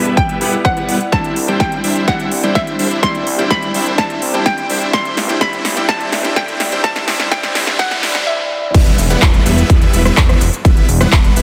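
A huge, thick, detuned supersaw riff drives this emotional, powerful festival progressive house passage in E minor at 126 BPM, its filter sweeping through the build-up over Em, Cadd9 and Am with sidechain pumping and tape echo, while a punchy, up-front electronic kick and an overdriven big-room kit of crisp hats, snare, claps, rim clicks, shaker and crash deliver a drum fill. A hollow, warbling square-wave pluck carries the melody through lush chorus, a bright concert grand piano sits in the background, and a fat analog bass with tube saturation anchors the low end, while a very quiet riser, noise sweep and downlifter join at 4.6 seconds. At 8.7 seconds the pluck and piano fall away as the drop lands back on Em, all set in a lush hall reverb under a dense, heavily limited master.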